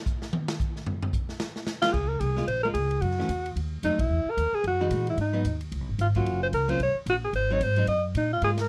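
Sophisticated and swinging, this fast small-group jazz excerpt at 222 BPM opens with an airy, polished drum kit playing alone until a breathy, mellow alto saxophone with vibrato and scooped notes takes the melody at 1.8 seconds over a dark, clean archtop guitar and a woody pizzicato upright bass, the band hitting an accent at 4.0 seconds in a softly reverberant, dusky production.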